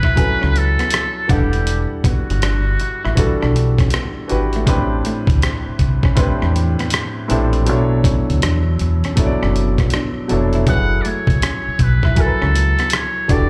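This excerpt sounds like a live club gig heard through the venue's PA, with club reverb around the band. It is a smooth, sultry neo-soul and R&B groove in 4/4 with a swung sixteenth-note feel, moving through minor eleventh chords from F#m11 to Em11, Am11 and Bm11 before coming back home. Up front, a dusty sampler-style drum kit with a gritty, thumpy kick, hi-hat and rim click sits beside a dark, round fingered dub bass, while a clear grand piano carries the accompaniment. Further back, a slightly broken-up electric guitar picks a second line, and both guitar and piano carry a slapback echo. A buzzy, thin trumpet with a metal mute, also with slapback echo, plays the jazz-style melody with vibrato and scooped notes for the first 3.5 seconds and returns at 10.7 s.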